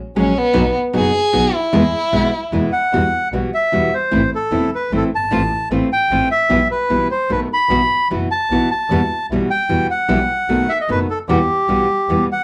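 Sultry and tense, this rubato tango fragment in three-four opens with an expressive, up-front violin singing with vibrato and portamento until 2.7 seconds, when a reedy, airy bandoneon takes over the melody; both share a cassette-tape tint with the warm, fingerpicked nylon-string guitar accompaniment, while a dark, very quiet studio string section adds bowed stabs and a distant, earthy bowed double bass anchors the low end, captured as a home cassette recording in a wet small room.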